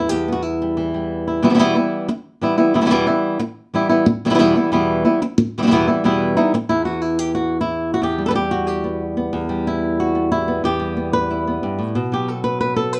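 Passionate and intense, this flamenco piece in E minor moves at a brisk 182 BPM in a straight 4/4. It is cut from a longer work, and a solo acoustic flamenco guitar carries it alone, fingerpicked from its low E up to the B above middle C. The guitar's tone is warm and sits up front, touched by a moderate studio reverb that places the listener a little further back in the room. The music shifts to new sections at 1.4 and 6.7 seconds. The harmony rests on E minor for most of the passage before turning to a B power chord at 11.9 seconds.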